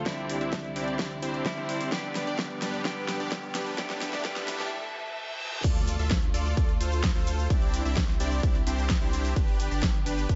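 Festival progressive house with a triumphant, anthemic lift, this excerpt moves in a straight 4/4 pulse from a build-up into a drop at 5.6 seconds. Bright, detuned supersaw chords carry the riff throughout, pumping against the sidechain and shaped by a low-pass filter and tape echo, while a rich, distant bowed string section sustains chords in the background with vibrato. A clean, picked electric guitar recorded direct sits up front in the opening, dressed in spring reverb and tape echo before it stops at 4.7 seconds, as a very quiet riser and reverse cymbal lead through a short break. The punchy electronic kick stays prominent, joined by a layered dance kit with a huge snare, metallic hats, cabasa and crash, both re-recorded in a small room, and a drum fill drives the build. At the drop a deep, saturated sine sub bass arrives with a very quiet impact, and the harmony moves from Cadd9 and G through Dm back to Cadd9 and G under a light reverb and a softened top end.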